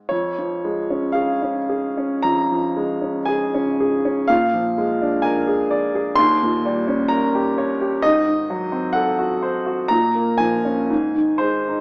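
A clear, intimate baby grand piano sits up front on its own in this tender, serene romantic nocturne in Db major, moving in 4/4 with rubato at roughly 52-66 BPM, its long sustain and audible action noise heard through a moderate recital-hall reverb and a small-speaker sound as the harmony passes from Db over F through Bb7, Eb7 and Ab7b9 to Bbm and Ab in this brief cut from a longer piece.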